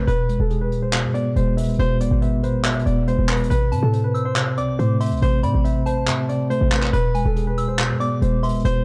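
Eerie and dark, this short piece of half-time trap-flavored hip hop moves at 140 BPM in A harmonic minor, tuned slightly below standard pitch, with its harmony shifting from E to Am at 3.5 seconds and back to E at 6.9 seconds. A dark, mellow concert grand carries the melody between A4 and E5, softened by a low-pass filter and trailed by tape echo, while a clean tine electric piano sits up front with mellow accompaniment through its built-in speakers. A punchy, tight 808-style bass with a sine body, a noise layer and a fast, decaying attack anchors the low end. A distant, roomy brush drum kit adds handclaps and hi-hat, roughened with vintage 12-bit sampler grit. At 3.7 seconds a soft, pure FM synth bell enters high above as a second line, its gentle tone shimmering with chorus and tape echo, all set in a small room with a dark, warm production.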